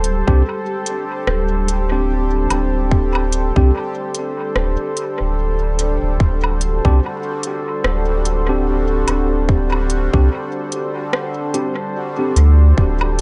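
A round, up-front sine sub bass and a tight, overdriven electronic kick, recorded again in a large room and entering at 0.3 seconds, anchor this peaceful, hazy ambient dub fragment at 73 BPM in 4/4 with swung 16ths, resting on a D7sus4 in D mixolydian. A deep, moody sawtooth pad with slow attack, chorus and reverb sustains chords overhead. A bubbling, resonant stepped-filter texture drifts beneath it, while a worn, slightly out-of-tune tine electric piano drops echoing stabs until 12.3 seconds, and an overdriven kit of smooth hats, rim clicks and woodblock trails dub echo through a dim, echo-heavy mix.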